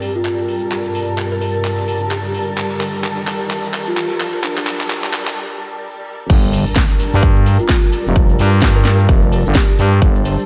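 A growling, thick FM bass and an overdriven, punchy electronic kick arrive up front at the drop at 6.3 seconds, giving this swaggering, aggressive bass house excerpt its swung weight. Before that, a build-up unfolds as dark, lush bowed strings hold sustained chords under a low-pass filter, a cloudy granular pad drifts in the background, and a mellow, woody kalimba plucks the melody through a diffuse ambient delay. A garage kit with cracking snare, metallic hats, handclaps, shaker and crash runs throughout, while electronic risers, swells and impacts sit in the background.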